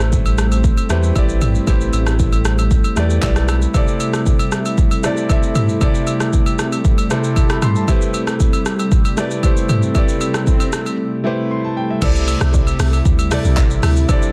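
Warm and relaxed, this amapiano excerpt in C major moves at 116 BPM in a straight 4/4, taken from a longer piece. A clear concert grand piano with a smooth, vintage tone plays the accompaniment throughout, over a lush unison pad whose thick, detuned, warbling chords carry chorus and sidechain pumping. A round analog bass, mellow and up front, holds the low end under an Am7 until 3.7 seconds, when the harmony shifts to C6. The deep house drum kit sits up front with a deep kick, tape-coloured layers, crash cymbal, handclaps, hi-hat, rim click, shaker and toms, plus soft clipping on the snare, while close, dry agogo bells and woodblock add a quieter acoustic layer. An electronic swell rises in the background from 9.9 seconds into a short break, and at the drop at 12.0 seconds a dark, percussive FM log drum bass with a fast attack and decaying tail takes over the low register. The sound is dry, dense and heavily limited, with a modern master.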